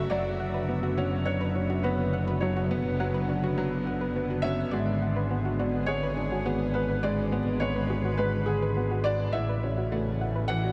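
Melancholic and intimate, this short piano-and-strings electronica excerpt moves at 104 BPM in a straight 4/4, drifting through Bmadd9/F#, G#dim and A chords in a dreamy mix soaked in cathedral reverb. A felt-muted upright piano carries the mellow melody over a worn, woody, slightly detuned upright piano riff, while a lush, thick unison pad with chorus and phaser sustains the chords and a soft, round pluck with tape echo traces arpeggios in the background. Up front, a bowed chamber double bass section anchors the bass with rich, expressive vibrato.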